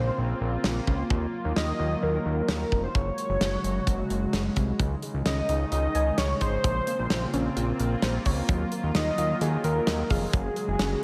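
A straight 4/4 pulse at 130 BPM drives this nostalgic, upbeat synth-pop excerpt, where a fat, wave-folded analog bass and a punchy, up-front studio drum kit entering at 0.6 seconds anchor the groove as a lush, detuned unison pad sustains chords moving through Bbmadd9, Ebmadd9, Gbsus2 and Dbsus2. Above them sit a bold, retro octave-doubled lead with vibrato, chorus and analog delay, and a soft, round pluck that adds background arpeggios from 4.8 seconds, all set in a dreamy mix soaked in hall reverb.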